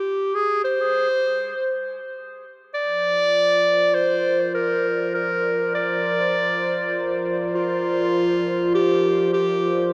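Meditative and deep, this ambient excerpt opens with a clear, present clarinet carrying a solo melody in classical style, its phrases trailed by dub echo. At 2.7 seconds a warbly, nostalgic tape-like pad enters beneath it with sustained Bbadd9/F chords, detuned and lo-fi, its slow attack and long release coloured by chorus and built-in reverb. A moderate echo chamber reverb gives the dark production its sense of space, with a gentle swing in the underlying pulse.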